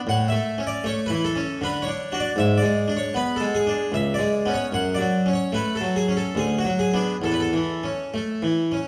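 Radiant and dance-like, this brief classical excerpt is a baroque-style suite movement in A major and 3/4, moving with a rubato lilt at 66-80 BPM. A solo Flemish-style harpsichord with three sets of strings sits up front, its plucked tone airy, full and brilliant as it travels through harmonies like Dmaj7, G#dim and F#m before settling on A/E near 7.2 seconds. A wet recital hall reverb and a dark production surround the instrument.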